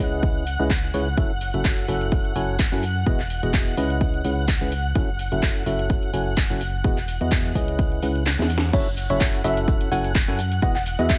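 Driven by a punchy, up-front electronic kick at 127 BPM in 4/4 with a light 16th-note swing, this soulful, energetic piano house excerpt in F# dorian pumps a round FM bass, a hollow, wave-folded organ stab riff with chorus and delay, and distant, woody violin chords over a tape-warm house kit of cracking snare, metallic hats, claps, shaker and crash, with a background tambourine, until a drum fill at 8.3 seconds tips into a drop where a sparkling, bell-like FM electric piano melody with phaser enters at 8.7 seconds over F#m7 and Emaj9 changes.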